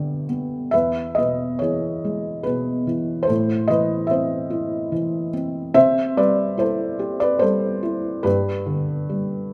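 Classical solo piano in a lyrical vein, this short passage cut from a longer piece moves at 72 BPM in 3/4 with a free, rubato feel and a warm, tender mood. A felt-muted upright piano carries everything on its own from 0.0 to 9.5 seconds, ranging from E2 up to G5. Its tone is soft, dark and intimate, with thick felt dulling each note into a short sustain. The mechanical noise of the action stays audible, and the instrument sits up front. The harmony drifts from G through E, Amadd9 and C6 before settling back on G at 8.3 seconds. A moderate recital hall reverb adds gentle space around the close, muffled sound, and the tuning sits at A4 = 442 Hz.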